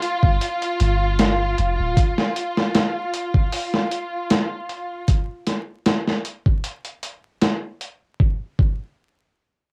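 Melancholic and dark, this trip hop excerpt moves at 77 BPM with a lightly swung 16th-note feel, opening on a G7(no3) chord held by a rich, bowed violin section whose smooth vibrato carries a 12-bit sampler grit until 5.1 seconds. A soft 808-style bass adds a brief, deep, round sine tone that fades quickly by 1.9 seconds. The up-front, compressed soul-sampler drum kit, with its thumpy kick, medium-tuned snare and hi-hat, sounds overdriven and tape-saturated as if re-recorded in a small room, playing on until 8.8 seconds under light reverb and vinyl crackle.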